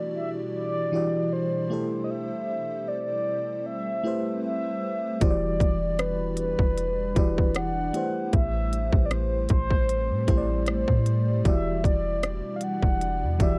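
A late-night, sensual slice of contemporary R&B, this short excerpt moves at 77 BPM in E minor with a gentle 16th-note swing, its chords drifting between Em7 and Am7. From the start, a lush, dreamy FM electric piano with a soft pad layer carries the accompaniment, its chorus and tremolo giving the detuned tones a shimmering lilt, while an ethereal, airy pad holds sustained chords underneath, bathed in ensemble chorus, built-in reverb and phaser. Just after the opening, a round, horn-like synth lead sings the melody with a soft attack, vibrato and a filter sweep. At 5.2 seconds a trap drum kit arrives up front with crisp hats, rim clicks and a hard-clipped kick, joined by a deep, boomy 808-style bass whose clean sine tone carries a touch of transformer saturation. The whole recording sits dry, coloured by the worn, warbling pitch drift of old cassette tape.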